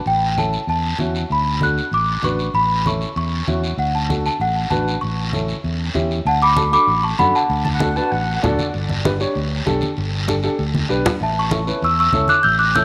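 A bell-like, delicate celesta carries the melody from the first instant of this festive cumbia excerpt in D major at 194 BPM, joined at once by punchy, up-front fingered electric bass, low-tuned congas in the background and a raspy guiro, with a woody upright piano entering at 0.4 seconds, its action noise audible. At 7.6 seconds the celesta gives way to a breathy, dark clarinet line with vibrato and scooped notes, close-miked and whispered, before a drum fill at 10.7 seconds brings the celesta back at 11.2 seconds over a move to A. A moderate echo-chamber reverb lends the danceable groove a roomy sheen, and the harmony moves between D, A7, G and A.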